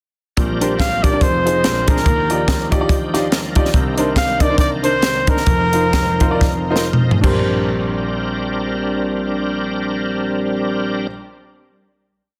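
A warm trumpet sits up front and carries the melody in a jazz-style solo built from short call phrases with light vibrato, ranging from Bb4 to F5 until 6.9 seconds. Beneath it, a bright tonewheel organ holds shouting, lightly overdriven chords in drop2 voicing through a slow rotary speaker and chorus vibrato, adding grace notes and short fills. A clear concert grand piano with deep bass and a smooth, vintage character plays close-voiced off-beat chords. The crisp fusion drum kit, airy and polished with dark cymbals, a high-tuned snare and a punchy kick, drives a two-beat praise groove in swung 4/4 at 107-143 BPM. This jubilant, reverent uptempo gospel piece in Bb major opens as a breakdown that slows from 3.7 seconds, and a drum fill leads into a final hit at 7.5 seconds, where the piano and organ ring on to the close. The master is dense and heavily limited, with light studio reverb.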